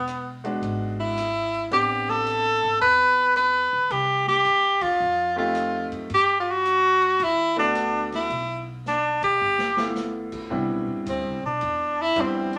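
Swung eighths in 4/4 carry this relaxed small-group swing and bop fragment, where a drum kit sits in the background with ride, hi-hat, rim click, a punchy kick and a fill near the end, a pizzicato upright bass plays woody and growly underneath, and a clear grand piano with audible action noise comps intimately, while an up-front bright tenor saxophone sings the melody with vibrato and scooped notes and breaks into a solo at 10.5 seconds, with the whole band hitting accents at 4.7 and 9.1 seconds, all set in a wet studio reverb.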